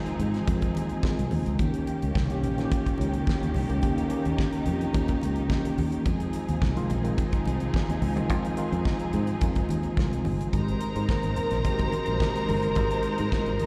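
A damped 70s drum kit with a fat snare and tight kick sits up front beside a round, foam-muted fingered bass and very quiet, hard-handed, low-tuned congas, driving this sultry disco excerpt at 107 BPM in F minor, while a worn, slightly out-of-tune tine electric piano with light overdrive and slapback echo moves between Fm7 and Eb7 over distant, woody string chords, until a lush, smooth violin section with slapback echo enters at 10.5 s on Abmaj7, the whole mix heard through a venue's PA in recital-hall reverb.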